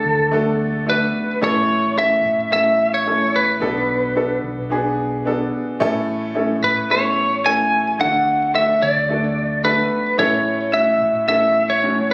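Hopeful and warm, this short piano-driven pop passage sets a slightly broken-up, twangy lead guitar melody up front over bright, woody upright piano chords, with a round, dark hollow-body electric bass entering at 0.1 seconds beneath, all heard through the club reverb of a phone recording made in the room.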